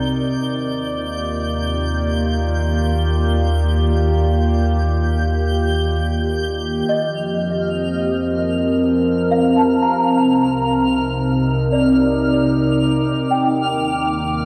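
Warm and luminous, this ambient passage, cut from a longer piece, floats in free time on a nostalgic, warbling tape-like pad holding Ebmaj9 and F9sus4 chords, while a deep, round sub bass fades in beneath it and a twinkling granular texture shimmers far above. At 6.9 seconds a bell-like, delicate celesta joins with airy arpeggios through chorus and analog delay as the harmony moves through Cm9 and back to Ebmaj9. The whole dreamy mix is soaked in a cathedral-sized reverb.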